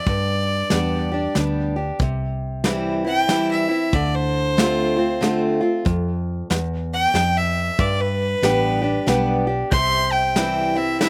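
A clear, biting fiddle and a woody, boxy acoustic guitar open this easygoing, heartfelt honky-tonk and classic country excerpt at 0.0 seconds. The fiddle plays a solo throughout with light vibrato and an airy bow, sitting close and up front with intense, one-player character. The old-stringed, ladder-braced guitar picks the accompaniment, joined almost at once by a dark, round, foam-muted electric bass and a soft brush kit with a punchy kick and medium-tuned snare. At 93 BPM in a swung 3/4, the chords move through C major from G to C, Dm7 and Em, with the music shifting into a new section at 2.0 seconds. Near the close, at 9.7 seconds, a clean, twangy pedal steel slides in quietly with compressed, sustained chords and volume swells. The sound is dry and open-air, with little reverb.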